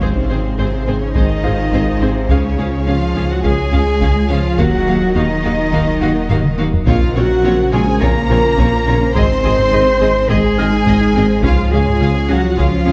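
A moderate scoring-stage reverb surrounds this relentless, vast hybrid orchestral and electronic cinematic cue at 105 BPM, where a distant solo cello with digital delay carries the melody over two lush violin sections, one playing a second line, while a close viola section accompanies, a mellow French horn section and a chorused airy pad sustain chords moving through Ab, Db, Ebmadd9 and Bbmadd9, a soft round pluck plays arpeggios, a quiet grand piano adds texture, a dark tuba, a cello section, a double bass section and a deep sub bass anchor the low end, and a taiko ensemble struck with hard sticks drives throughout with a fill at 6.3 seconds.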